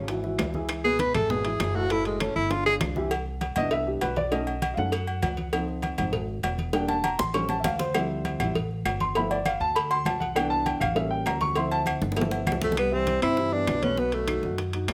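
A brisk, danceable Afro-Cuban jazz excerpt at 199 BPM opens with an up-front, woody upright piano and a dark, growly pizzicato upright bass, joined by close, dry bongos and cowbell, ringing metal-shelled timbales and agogo bells, soft-handed low congas in the background and roomy claves, while a tenor saxophone with vibrato and scooped notes plays a short solo. From 3.1 s the music moves into C major as the piano takes a sophisticated solo over rich jazz harmony, with drum fills along the way. At 12.6 s the saxophone returns alongside a breathy trombone second line as the clip closes.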